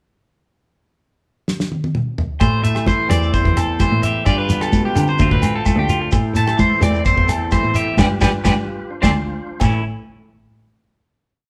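A damped 70s drum kit opens with a fill at 1.5 s, then at 2.4 s a bittersweet highlife guitar band groove in A minor at 129 BPM settles in: a twangy, slightly broken-up electric guitar plays an arpeggiated ostinato up front beside the dry, tight kit, a focused bowed cello with vibrato carries a syncopated bass figure, a compressed clean electric guitar picks an alternating-thumb fingerstyle accompaniment, and bright congas play under soft hands, while a percussive tonewheel organ holds sustained chords through a slow rotary speaker and grainy shekere and ringing agogo bells sit in the background of a large studio room, with a band accent leading into a final hit at 9.8 s.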